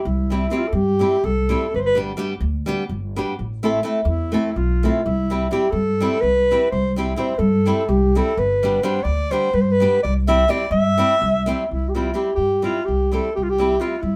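Festive and virtuosic, this Balkan wedding-band cut in C major drives along at 253 BPM counted in eighths, in a straight 7/8 metre. A mellow alto saxophone carries the melody up front, playing a classical-style solo with vibrato from the opening through 11.7 seconds before the music moves into a new section that runs to the end at 14.2 seconds. Beneath it, a woody upright bass played pizzicato on steel strings holds the low end, while a flamenco guitar, bright with fresh strings and fingerpicked, supplies the accompaniment. The harmony cycles through C, G and A minor before settling back on C. All three players sit close in a small room with a moderate reverb, captured as a band performing live together, and the recording is cut from a longer piece.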